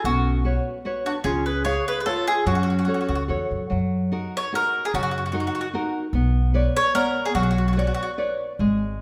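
Lively and romantic, this cut from a longer Italian folk serenade moves at 148 BPM in a rubato 3/4, opening in F# minor before brightening to F# major at 3.7 s. A round, double-strung picked mandolin carries the melody up front over a full-bodied, fingerpicked nylon-string guitar and a woody, thumpy pizzicato upright bass. A soft-attack classical clarinet adds a distant second line until 3.3 s, all set in a moderate recital-hall reverb.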